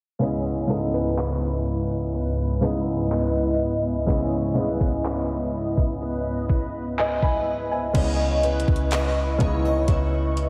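Soaked in lush hall reverb and a low-pass filter, with a filter sweep running until 8.0 seconds, this dreamy, moody contemporary R&B excerpt at 62 BPM in C# minor sets a soft felt-muted upright piano, a detuned sawtooth analog pad with chorus, and boxy picked swing-style acoustic guitar arpeggios through ensemble chorus and diffuse delay over a C#m9 chord. A crisp, thumpy 8-bit drum machine with kick, handclaps, hi-hat and crash joins at 1.2 seconds, before a deep, boomy 808-style bass arrives up front at 8.0 seconds to give the sensual groove its weight.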